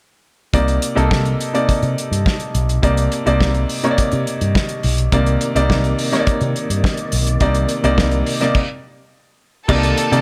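Disco with a sultry, driving mood, this short cut from a longer piece rides a straight 4/4 groove over a Cm9 harmony. A clear, slightly worn grand piano sits up front with the accompaniment, joined from 0.5 s by a picked electric bass pushed through an envelope filter and an acoustic soul drum kit with a tight kick, medium-tuned snare, hi-hat and crash, its top end rolled off. At 5.1 s a mellow, round tonewheel organ slips in behind them with sustained percussive chords, colored by chorus vibrato and a slow rotary speaker. A stop arrives at 8.6 s, and at 9.7 s a lush, distant studio string section enters with a focused bowed line as a close, dry cowbell ticks by, barely audible. The whole is set in a small, lightly reverberant room.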